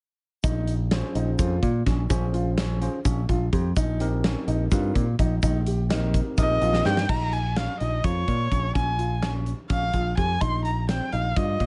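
Progressive instrumental band music in 7/8 at 253 BPM counted in eighths, intricate and tense in Bb dorian, cut from a longer piece, with a big, dark rock drum kit with a punchy kick and a warm, up-front picked electric bass driving a mellow, vintage-toned grand piano playing arpeggios, its action noise audible. A gritty, overdriven tine electric piano through a combo amp adds accompaniment and a grainy egg shaker sits in the background until a drum fill at 6.7 seconds. From around 6.4 seconds a rich, nasal erhu carries the melody up front with vibrato and portamento, all under light reverb.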